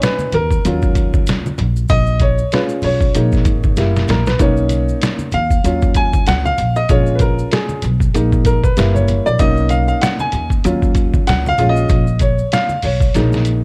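Piano, drums and hand percussion open together on this mellow, cool jazz-hop excerpt, a swung hip hop groove at 96 BPM in 4/4 that is cut from a longer piece. The upright piano sits up front with a smooth, vintage, woody tone and short sustain, carrying the lead across the whole passage over jazzy chords such as Bmaj9, Ebm9, Bbm7 and Gb7b9. The trip hop drum kit has a sampler-style, pitched-down, muffled character, with a thumpy kick, a medium-tuned snare and hi-hat, compressed and re-recorded in a small room, and it drops in fills at 3.8 and 13.1 seconds. The upright bass joins at 0.3 seconds, plucked on steel strings with a growly, acoustic sound. Maracas and congas add bright, saturated hand percussion in the background, while the small-room ambience gives the whole production a dark, warm feel.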